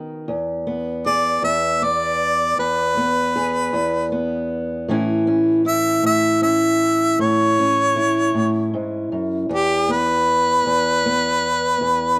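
A dry, close studio sound in a 1970s style frames this rollicking, soulful acoustic country blues, cut from a longer piece and moving at 52 beats per minute in a straight 12/8 in E major. A dark, boxy parlour steel-string guitar, fingerpicked and up front, plays accompaniment from the start, moving from E to A and back to E. At 1.1 seconds a clear, close-miked harmonica enters and carries a jazz-style solo to the end, with vibrato and scooped notes, sitting slightly above the guitar.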